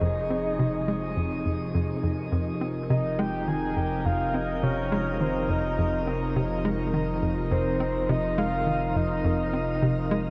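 A long, wet shimmer reverb wraps this hypnotic, mysterious stretch of sequencer-driven space music, cut from a longer piece and held on a single F minor seventh chord at 104 BPM in a straight 4/4. Up front, a sweeping resonant pad of detuned sawtooths holds sustained chords from C3 to Bb4, its slow filter swell and chorus giving it an evolving shape. A hollow, bouncy square-wave pluck with a noise layer repeats a riff between F2 and C4, with chorus, cassette-tape colour and analog delay on its short, fast-decaying notes. A soft, octave-layered lead, blending triangle, sawtooth and a sine sub octave with vibrato and chorus, carries a mellow, round melody between C5 and Ab5, echoed by analog delay. Beneath them, a deep sine sub bass sits on F1 with tube saturation, all four parts playing together for the full 10.3 seconds.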